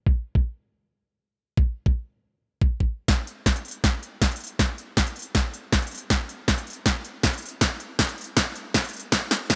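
A half-time future bass groove opens with a knocking, tape-warm electronic kick up front from 0.1 seconds under a filter sweep, then at 3.1 seconds a layered big-room dance kit with a punchy snare and crisp hi-hats joins the build-up and drum fill, giving this playful, lush cut from a longer piece a light reverb sheen.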